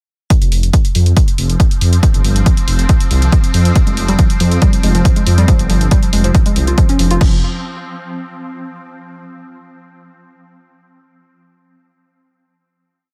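An up-front, punchy electronic kick drives this short, dark peak-time techno piece in a straight four-on-the-floor, joined by tape-warm drum-machine hats and crash, a deep, rumbling detuned saw bass on the off-beats, and a swarming, granular drone entering at 1.1 seconds. At 3.9 seconds a warbly, dusty lo-fi pluck arrives with chorus and delay, its 12-step loop drifting against the bar, before everything gives way to a final note at 7.2 seconds in a digital ambience.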